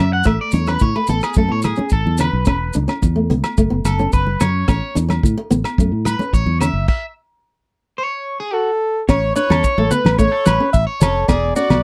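This joyful, danceable highlife guitar band excerpt in straight 4/4 is captured as a dry, close 1970s-style studio recording, cut from a longer piece. A fingerpicked flamenco guitar plays accompaniment while a twangy, slightly broken-up electric guitar spins arpeggios through phaser and slapback echo, over a round, foam-muted fingered electric bass sitting up front. A damped 70s drum kit with a fat snare, tight kick and rolled-off top drives the groove with crash, hi-hat, kick, rim click and snare, joined by ringing agogo bells, grainy maracas and bright, thin-skinned congas set in the background. A clean electric guitar solo runs from the start over chords moving from A through E5 and F#m, with a stop from 6.9 seconds until 9.1 seconds. A veiled, forceful trumpet with bucket mute enters at 8.5 seconds, taking a jazz-style solo with vibrato as the harmony returns to A and turns to E7.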